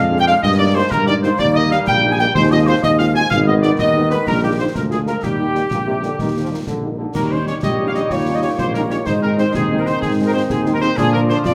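A steady, straight 6/8 pulse at 125 beats per minute drives this festive, spirited military-style march for wind band in Eb major, heard as a short cut from a longer piece. A trumpet section with a vintage, mellow tone and light vibrato carries the melody, while the woodwind section sits distant and roomy behind it and an airy flute section adds an expressive second line with lifted highs. The tuba is the most up-front voice, anchoring the bass, as a clear-toned trombone section holds sustained chords and a very quiet French horn section fills in the accompaniment. Concert snare drum, bass drum and clash cymbals with dark cymbals keep the march step from the first moments. At 7.1 seconds a warm euphonium joins with its own second line as the opening phrase repeats, the harmony moving through Eb7 and Ab toward Bb by 11.0 seconds. A moderate large-studio reverb gives the ensemble a generous, spacious sound.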